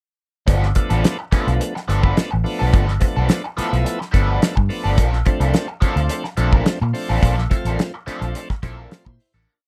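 Funk at 107 BPM in a straight 4/4, this short, complete piece has a sly, driving mood and a dark, warm, dry production that keeps the parts close. A damped 70s drum kit sits up front with a fat snare, tight kick and hi-hat, playing a syncopated groove full of ghost notes. Beside it, a vintage muted fingered electric bass with tube saturation gives a round, punchy, foam-muted tone, anchoring its syncopated riff on the downbeat between muted ghost notes. Further back, an overdriven electric guitar scratches out picked sixteenth-note rhythm through a wah pedal. From 0.8 seconds a bright tonewheel organ, lightly overdriven and spun through a slow rotary speaker, shouts syncopated rootless chord stabs with key click, grace notes and short fills. The harmony moves from G9 to Bbmaj7 at 5.0 seconds, and the whole piece fades out from 7.2 to 9.5 seconds.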